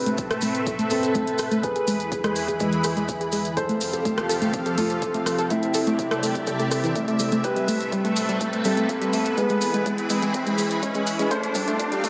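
Progressive house at 124 BPM in A minor, this emotional, bittersweet build-up is cut from a longer piece. It opens with a concert grand piano melody with deep bass, softened by subtle chorus, a low-pass filter and tape echo, over an up-front, lush, bright unison pad of detuned sawtooth and square waves with a sub octave, chorus, phaser and sidechain pumping, while a round, evolving analog pluck plays arpeggios through chorus, cassette tape and tape echo, with filter sweeps on both pluck and piano. A riser enters at 3.5 s, and in the background a deep house kit of hi-hat and rim click with pumping hats, grainy, close maracas and an overdriven, layered electronic kick drive toward a drum fill from 7.4 s, as the chords move through Amadd9, E, Fadd9 and Cadd9 in a dreamy mix soaked in wet plate reverb.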